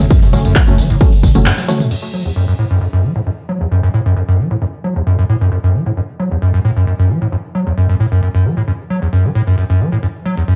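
A straight 4/4 pulse at 133 BPM drives this dark, industrial peak-time techno fragment in F# minor, which opens on a drop where a heavy, up-front electronic kick joins a punchy, overdriven analog drum machine of claps, hi-hat, ride, crash, tambourine and toms, a growling 808-style bass low in the mix, and crisp, detuned wavetable chord stabs trailing tape echo, all riding a squelchy, gritty acid bass riff with lush chorus and sidechain pumping, until a short break at 1.5 s gives way to the acid bass playing alone from 2.0 s under a long filter sweep in a stone-room reverb.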